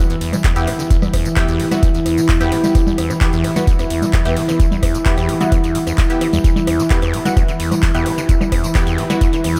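A booming drum machine with metallic hi-hats, congas, handclaps, rim clicks and tambourine sets this raw, dreamy acid house cut in motion, with an up-front, overdriven analog kick driving it along. Beneath them, a squelchy, resonant sawtooth acid bass riff runs through a filter sweep with tube saturation and delay, while a smooth, detuned analog pad sustains chorused chords with sampler grit and sidechain pumping. A nasal, band-passed chord stab with ring modulation and phaser adds bright accents, and the whole mix is soaked in a lush hall reverb.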